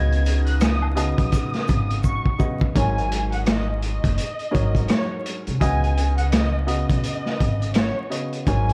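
This gritty, moody boom-bap hip-hop excerpt opens with a lush bowed violin section carrying the melody over a dark upright piano, a pizzicato upright bass and a deep, very quiet analog pad holding sustained chords. A crunchy breakbeat kit joins almost at once, its muffled, saturated kick, snare, rim click and hi-hat sitting up front with a swung sixteenth-note feel, while egg shaker and woodblock sit in the background. The bass is woody and thumpy, the piano mellow and vintage with a cassette-tape tint, and the violins carry expressive vibrato and a tape echo. The shaker and woodblock stop at 2.6 seconds and the pad at 2.7 seconds, as a drum fill that starts at 2.0 seconds leads into the second section. The production is dry and warm, with vinyl crackle adding a lo-fi grain.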